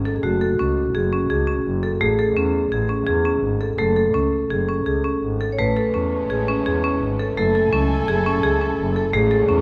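Contemporary chamber music in an uneven 5/4 meter, this restless, hypnotic excerpt moves at 169 BPM in F# minor, cut from a longer piece. A woody, bright marimba played with hard mallets spins arpeggios up front, while a vibraphone with medium hard mallets, its motor off, adds a dark, ringing second line. Beneath them a single bowed double bass carries the low end with a reedy gut-string tone and light vibrato, placed up front in the mix. At 5.6 seconds a muted chamber string section enters with veiled, softly attacked sustained chords played con sordino. The harmony alternates between F#madd9 and Amaj7 before settling on F#m9, captured by close, detailed microphones with light reverb.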